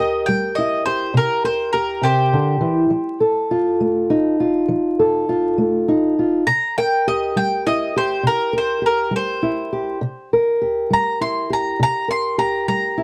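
A round, double-strung mandolin picks a gritty, swaggering blues solo in C mixolydian from the first second, up front over a boxy, woody fingerpicked old ladder-braced acoustic guitar with old strings, at 68 BPM in 12/8 moving from C7 to F7 at 2.9 seconds and back to C7 at 6.5 seconds, all in a dark, warm production with vinyl crackle and a moderate booth ambience in this short cut from a longer piece.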